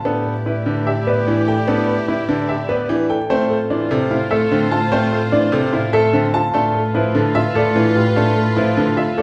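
A dark, mellow baby grand piano is among the most prominent parts, spinning arpeggios in an intimate sound with audible action noise and a short sustain. This is a 9.2-second excerpt of minimalist classical pattern music, cut from a longer piece, with a mood that is both meditative and urgent. A worn, natural grand piano carries the melody above it, and a close-miked oboe in classical style sings a vibrato second line. A brilliant grand piano, also intimate and with its own action noise, plays the lower accompaniment, while a rich, smooth string section holds bowed chords and a distant, expressive double bass section plays a single low A. The harmony moves from Em7/A at 0.1 seconds to Dm7/A at 3.3 seconds and a rootless G13/A at 6.5 seconds, all over that bass note, and a recital hall reverb gives the whole a wet, spacious finish.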